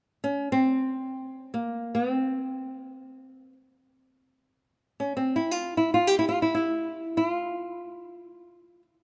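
A lone fingerpicked nylon-string guitar, small and up front, carries a hypnotic, melancholic Arabic melody in free time from 0.2 to 8.8 seconds, moving between Bb3 and G4 in C maqam hijaz and bathed in a moderate plate reverb, with the rough home-demo sound of a passage cut from a longer piece.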